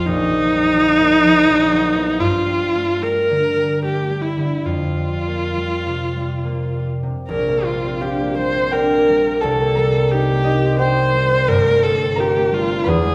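Bathed in the wet reverb of a recital hall and heard from further back in the room, this pastoral, dreamy impressionist classical duo drifts in a rubato three-four, with a rich, focused, bowed viola singing the vibrato-laden melody up front over a concert harp whose fingerpicked, ringing chords such as Gm9 and Bb69 accompany it throughout this 13.1-second fragment of a longer piece.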